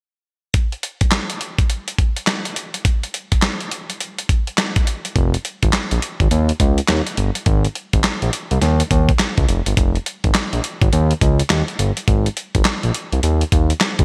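New jack swing R&B with a bouncy, confident strut, this excerpt moves at 104 BPM in 4/4 with a 16th-note swing that gives it a loose, head-nodding lilt. A gritty, sampler-style drum kit opens at 0.5 seconds, its compressed sound pairing a thumpy kick and medium-tuned snare with hi-hat and handclaps, all sitting up front. At 5.2 seconds a smooth synth bass joins, built from sawtooth, square and triangle waves with a touch of ring modulation, its fast attack and sustained notes ranging from F1 to Eb2. The bass also sits up front, and the two parts carry on together until the cut at 14.0 seconds, with a new section arriving at 9.8 seconds. Light reverb and a digital ambience surround the whole.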